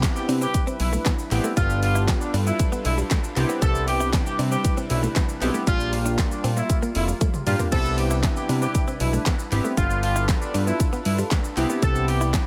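A straight 4/4 groove at 117 BPM drives this euphoric, upbeat dance-pop excerpt in C major, carried by a pop drum kit with a punchy kick, fat snare, handclaps, hi-hat, shaker, toms and crash, sitting up front with a layered, produced electronic sound and a drum fill at 7.2 seconds. Beneath it, a thick analog bass of detuned sawtooth and square waves pumps against the kick, its moving notch adding motion from F1 to C3. A glossy, retro polysynth built on pulse-width-modulated and sawtooth tones supplies chorused accompaniment with a filter sweep, while a soft, airy supersaw holds mellow sustained chords in the background, both also pumping with the sidechain. A clean, direct-recorded electric guitar picks a compressed riff with subtle chorus further back, and a grainy tube shaker adds a very quiet, bright edge. From 0.2 seconds a distant, roomy horn section with light vibrato carries the melody with delay over a progression that moves between Cmaj7, G7 and Gm7/Bb, all in a dry mix with little reverb.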